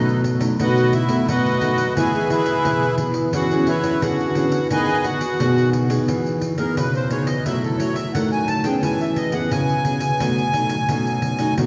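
Awash in cavernous, cathedral-like reverb, this playful, lively samba-choro passage cut from a longer piece moves at 87 BPM in E major, with a sweet, reedy accordion playing the melody up front over a fingerpicked nylon-string guitar accompaniment, a full-bodied, thumb-plucked nylon-string bass line with audible finger squeak, and a jingly pandeiro close and dry beneath them.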